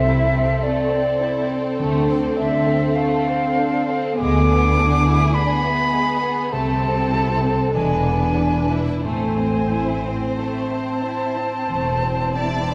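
In a rubato 4/4 at 44-54 BPM, this slow, yearning and solemn romantic orchestral fragment in A minor sets a lush, vibrato-rich violin section on the melody beneath an airy, bright flute line held up front, while a distant, expressive second violin section and smooth viola section fill the middle, a ringing thumb-plucked harp spins arpeggios, and focused cellos in the background and double basses anchor the bass, all moving through Am/C, Dm7, E7/D and E7 to settle on Am at 9.0 seconds within a moderate scoring-stage reverb.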